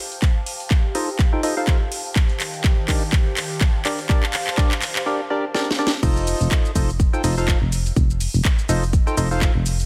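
An airy, breathy pad with chorus, phaser and sidechain pumping opens this uplifting, euphoric piano house fragment over a build-up full of drum fills, as a punchy, tape-warm electronic kick, a house kit with cracking snare, metallic hats, handclaps, shaker and crash, and a very quiet, gritty sampler-style soul kit arrive together. A hollow, percussive organ stab with subtle chorus, delay and pumping carries the riff from 0.9 seconds through the F7, Ebmaj7 and Gm7 changes. At the drop at 6.0 seconds, after the pad has stopped at 5.1, a round, mellow FM bass joins up front, all under light digital reverb.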